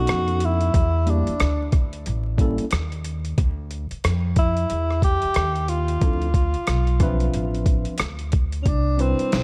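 Jazz-hop with a smoky, nocturnal mood, this short excerpt moves at 91 BPM in 4/4 with a swung sixteenth-note feel in D dorian. A breathy tenor saxophone carries the melody up front, mellow and smooth on top with light vibrato, its phrases trailed by tape echo. Beneath it, a worn, slightly out-of-tune tine electric piano plays the accompaniment, lightly overdriven as if heard through built-in speakers. A woody, growly pizzicato upright bass sits up front, while a gritty, pitched-down boom bap sampler-style kit enters at 0.1 seconds with a thumpy kick, medium-tuned snare, rim click and hi-hat. The harmony moves from B7 through Em7b5 and A7b9 to a long Dm9, reaching Cmaj7 at 8.7 seconds, all set in a dark production with small room ambience and vinyl crackle.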